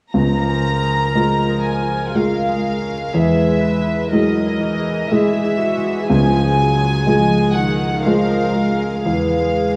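A polished, up-front grand piano, ringing fingerpicked harp arpeggios and a floating, pure-toned violin section playing sul tasto open this tender, uplifting cinematic passage together at 0.1 s, with an intimate viola section of light vibrato joining at 0.2 s. The music moves in a rubato 3/4 around 61 BPM in Db major, its harmony swaying between Db and E chords as the soft-attack bowed strings carry the melody and accompaniment over the piano's short-sustained accompaniment. A moderate scoring-stage reverb and a vinyl crackle give this brief cut from a longer piece a gently aged, warm glow.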